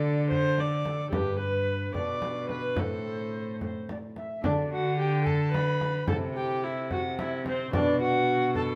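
A steady, unhurried 6/8 pulse carries this solemn, courtly renaissance-style consort dance, cut from a longer piece. A pure, wooden alto recorder sings the melody with gentle vibrato and a soft attack, sounding distant and expressive. Up front, a single bowed viola adds a second line with a reedy, gut-string period tone and a smooth top. Beneath them, a rich cello holds the bass, while a fingerpicked concert harp rings in the background, and a deep, large frame drum enters at 0.3 s. The opening phrase returns at 4.4 s, and the consort plays throughout in a wet stone room that lends the ensemble an austere, echoing air.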